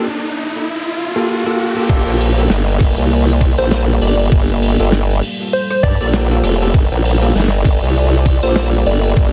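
Riding a swung sixteenth-note groove at 99 BPM in 4/4, this gritty, swaggering glitch hop cut sits in G minor over a Gm9 chord. It opens on a short build-up where a bell-like, clean tine electric piano plays stabs with tape echo and sidechain pumping while an electronic riser climbs until 1.9 seconds. The drop then lands with a thumpy, pitched-down sampler kick, an acoustic studio kit of snare, hi-hat, rim click and crash, and an up-front wobble bass whose formant filter, pulse and sine tones, tube saturation and chorus give it a chewy, saturated growl. A deep, moody analog pad of detuned sawtooth and sub octave enters at 2.3 seconds, sitting dark in the background with chorus and pumping. From 3.6 seconds a punchy, catchy unison lead of detuned square waves with a noise layer, filter sweep, moving notch and vibrato carries a bright hook high up, trailed by tape echo. Light small-room reverb and vinyl crackle colour a dense, heavily limited modern master.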